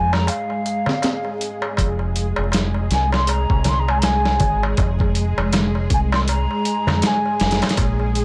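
A swung sixteenth-note groove in 4/4 drives this dark, cinematic trip hop fragment, with a gritty, sampler-style drum kit of thumpy kick, hi-hat and snare sitting up front beside a round, deep dub fingered electric bass, while a crisp metal-shell darbuka adds small, high percussion. Over sustained string-machine cellos with a vintage, evolving ensemble-chorus shimmer, a distant wooden flute carries the mellow, vibrato-touched melody through dub echo until it drops out at 7.6 seconds. The dry, blown-out recording is laced with vinyl crackle and overdrive, and a break between 0.3 and 1.8 seconds gives way to a settled Fm chord.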